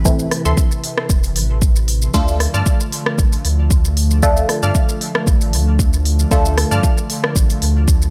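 Dub techno in a deep, meditative mood, this short excerpt sits in a digital ambience over Am and Dm chords. An up-front, deep electronic kick and a round sine sub bass anchor a deep house kit of smooth hi-hats, rim clicks and shaker, while an airy, breathy pad holds sustained chords with chorus and sidechain pumping. Two filtered dub chord stabs, both with sidechain pumping and dub echo, join in: a muted, evolving one with a moving notch and phaser plays the stabs from 0.1 seconds, and a brighter, chorused one carries a higher riff from 0.5 seconds.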